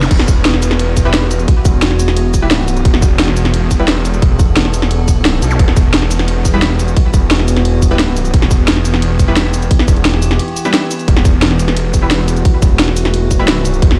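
A thick, detuned saw bass with chorus and tube saturation drives this tense, futuristic cut from a dark technical drum and bass track. A tight, up-front electronic kick anchors the straight 4/4 drop, joined by a kit of cracking snare, hi-hat, ride, shaker and crash. Behind them an eerie, metallic drone holds sustained chords through chorus, reverb and sidechain pumping, bright, punchy orchestra-hit-like stabs with tape echo come in at 1.1 s and return at 6.5 s, a short break falls near the end, and a faint electronic zap sounds twice, the whole mix heard as if on a big sound system in a bare stone room.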